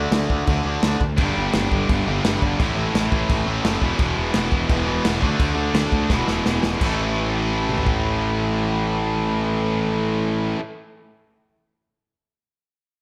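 A growly, up-front fuzz bass drives this rebellious, energetic punk rock clip in A major at 170 BPM, joined by two bright, distorted picked guitar riffs (one tucked into the background), a double-tracked high-gain guitar entering at 1.2 seconds, and a loose, warm indie drum kit with a rolled-off top whose fill at 6.1 seconds leads into a new section before it stops at 7.9 seconds, all set in a lush hall reverb for a big arena sound.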